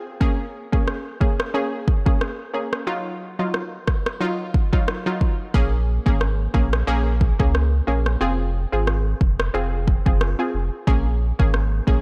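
Dancehall in Bb minor at 90 BPM, this short cut from a longer piece feels tough and hypnotic, with a gentle 16th-note swing in 4/4. An analog pluck carries the accompaniment from 0.2 seconds, its detuned sawtooth tone bright and evolving, with a noise layer, a filter sweep and a chorus effect giving the short, snappy notes some shimmer. Alongside it, an electronic afro-pop drum kit sits up front, built on a deep kick and rim clicks. The opening stretch acts as a break until the warm sub bass arrives at 5.5 seconds, a round, sine-like low end with a fast attack and sustained, mellow notes. The chords move from Bbm7 to Ebmadd9, back to Bbm7 and on to Fm before settling back on Bbm7, all framed by light reverb and a digital ambience.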